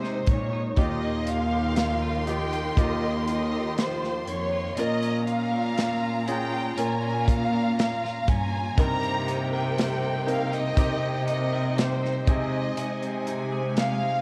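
In a straight, unhurried 4/4, a punchy, up-front studio drum kit of kick, snare and hi-hat carries this hopeful, tender pop ballad. A lush, vibrato-rich violin section sings the melody alongside a smoother second violin line, while reedy, gut-toned cellos hold the bass up front. A brilliant grand piano accompanies in the background, clean picked electric guitar spins arpeggios, and a background string section with gentle portamento sustains chords from Ab/C through Ebadd9, Bbm and Cm7, all in a small room with light reverb and the warbling pitch drift of worn cassette tape.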